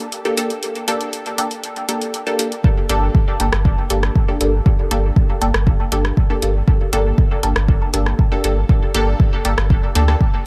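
Dub techno with a cavernous, hypnotic mood, heard in a short cut from a longer piece in a straight four-beat pulse. A filtered dub chord stab sits up front from the first second, its muted, detuned sawtooth tone plucked through a filter and decaying, colored by chorus and phaser, pumping against the kick and trailing off into dub echo over a minor add-nine chord. Alongside it, a tape-softened deep house kit of hi-hat and rim click ticks quietly in the background, its hits also thrown into dub echo. At 2.6 seconds a deep, up-front electronic kick arrives, and at 2.9 seconds a pure sine sub bass follows, clean and smooth with a fast attack and dark, sustained notes that pump beneath the beat. The drums carry a slightly boxy, re-recorded character, while the overall sound stays dry and close.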